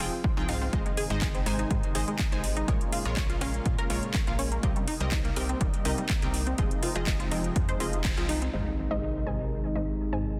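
A dreamy, driving progressive house excerpt at 123 BPM opens with tight, detuned sawtooth arpeggios, bright unison pluck stabs with dub echo and sidechain pumping, a round, deep analog bass, and an overdriven house kit of handclaps, metallic hi-hats and rim clicks, with a punchy layered kick joining at 0.2 seconds. From 0.7 seconds an airy, evolving supersaw swell holds low-passed chords in the background over a progression moving from Fm7 through Ab, Bbm7 and Cm7. After a band accent, a filter sweep on the swell and a background electronic impact arrive together at 8.5 seconds, all set in light reverb within a dense, heavily limited master.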